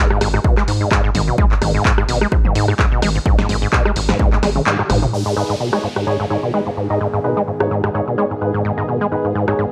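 A dry, gritty hardware sound with light reverb carries this hypnotic, driving acid house excerpt in G# minor at 128 BPM with a 16th-note swing, where a squelchy, resonant sawtooth acid bass riff with overdrive, chorus, tape grit and delay runs throughout beside a punchy analog drum machine of handclaps, hi-hat, rim click, snare and toms, while an up-front electronic kick and a round, deep bass with tube saturation and sidechain pumping drive the opening until a drum fill from 4.2 s hands over at 5.1 s to a G# minor chord on a smooth, detuned background pad, a hollow organ-like stab with chorus and delay, and a faint electronic downlifter.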